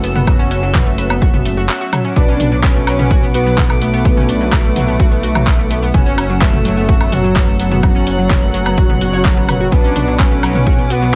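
A straight 4/4 groove drives this dramatic melodic techno excerpt, anchored by a punchy, up-front electronic kick and a layered deep house kit of handclaps, hi-hat, toms and woodblock, with a grainy egg shaker in the background; a fat sawtooth bass, round, warbling pluck arpeggios with chorus and delay, nasal synth brass stabs with a cassette-tape tint, and floating, pure string chords all pump with the sidechain, and a bold, wave-folded unison lead joins them to take up the melody at 2.2 seconds.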